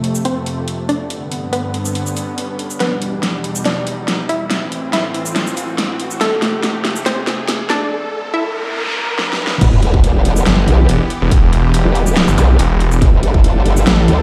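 Heavy and aggressive, this excerpt of wobble dubstep runs at 141 BPM in 4/4 with a half-time, lightly swung feel in E phrygian. It opens on a build-up in which a lush, detuned sawtooth pad holds sustained chords under sidechain pumping and a low-pass filter, while a punchy, wave-folded unison pluck carries the melody through tape echo, both moving under a filter sweep. A layered dubstep kit with a huge snare, metallic hats, shaker and crash sits up front in studio reverb, with drum fills, a background riser and a noise sweep pushing toward the drop at 9.6 seconds. There a growling, wobbling bass shaped by a formant filter, chorus and overdrive lands alongside a punchy, tape-warm electronic kick and an impact, and at 10.5 seconds a bright, snarling distorted saw bass with a moving notch adds its saturated grind. Sub drops and zaps colour the effects layer, and the whole mix sounds played on a big system in a bare room with a large studio reverb and high-pass filtering.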